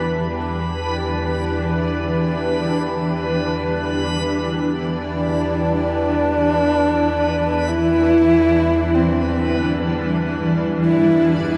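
Drenched in a wet, echo-heavy chamber reverb, this unsettling, desolate dark ambient drone fragment layers a cloudy, full-bodied granular pad up front over a tense, string-like bowed drone and a bright, reversed, dreamy texture, and at 5.1 seconds a husky, nasal horsehead fiddle joins them, close and up front with vibrato, portamento, an airy bow and dub echo.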